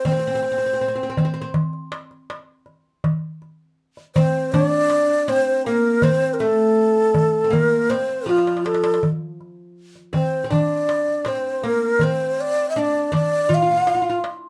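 The recording has a moderate studio ambience, with the trio playing live together in one room and captured as a short section cut from a longer piece. This Arabic maqam ensemble piece moves in a straight, steady four, its mood stately yet festive. Up front, a breathy, end-blown reed-cane ney carries the melody with vibrato, tongued notes and lifted highs. Beneath it, a fretless oud plays a second line with a plectrum, its double strings giving a woody tone as it sits lower in the mix. A small, metal-shelled darbuka, close and dry and also up front, cracks out crisp, high strokes under hard hands, and it breaks into a fill from 8.3 to 9.0 seconds.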